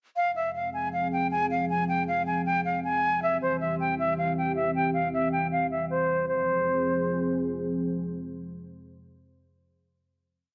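Dark and eerie, this short hip hop piece in a trap style moves at 157 BPM in 4/4 with a half-time feel, set in F harmonic minor and tuned slightly sharp at A4 = 441 Hz. A silver concert flute carries the melody from 0.2 to 7.4 seconds, its airy, tongued tone marked by vibrato and an unsteady quality, placed up front and softened by a low-pass filter as it repeats like a sampled loop. Beneath it, a dark analog pad holds sustained chords from 0.2 to 10.1 seconds, its detuned sawtooth and triangle layers with a sub octave giving a deep, moody body shaped by a slow attack, long release and chorus. The harmony moves from Fm to C during the opening breakdown before settling back on Fm at 6.3 seconds for a final chord that lingers. A lush hall reverb and an overall low-pass filter wrap the whole piece in a shadowy, spacious haze.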